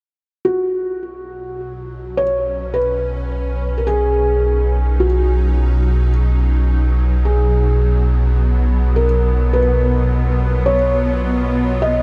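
A felt-muted upright piano, intimate and up front with audible action noise and a touch of delay, carries a soft melody from 0.4 seconds over a deep, round analog bass on B entering at 0.5 seconds and a bright, detuned wavetable pad that fades in with ensemble chorus and morphing texture, the harmony resting on a Badd9 chord in this serene, peaceful ambient passage in B lydian at 53 BPM in 3/4, cut from a longer piece and bathed in a huge reverb within a dark production.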